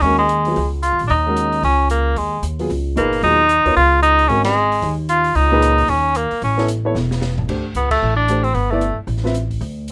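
Modal jazz with an intense, cool swing, led by an up-front tenor saxophone with a warm, vintage tone and light vibrato carrying the melody over natural-sounding baby grand piano accompaniment. Woody pizzicato upright bass sits forward in the mix, while a quieter acoustic drum kit with dark cymbals, a high-tuned snare and a boomy kick plays a fill starting at 6.9 seconds, and the band hits accents at 4.4 and 7.9 seconds. The sound is dry and rough, like a home demo, and the piece is cut from a longer performance.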